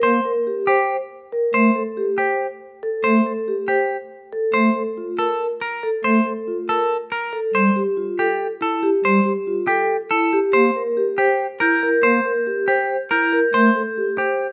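Set in a brisk 7/8 at 280 BPM counted in eighths, this minimalist pattern piece moves with a straight, propulsive pulse and a bright mood, cut from a longer work. A clean electric guitar carries the melody up front, its picked, twangy tone sitting between G4 and C5. Alongside it, a vibraphone played with medium mallets spins arpeggios in a dark, smooth, ringing voice with slow motor vibrato, while a pipe organ on stopped flute stops holds a soft, hollow accompaniment low in the G3 to Bb3 range with a romantic voicing. The harmony moves from C5 through Am7, Bb5, Fmaj9 and C7 before returning to Am7 at 13.5 seconds. A glockenspiel with hard plastic mallets adds sparkling, bell-like arpeggios on G6 from 11.6 to 13.4 seconds, and a moderate recital hall reverb surrounds the closely miked, detailed sound.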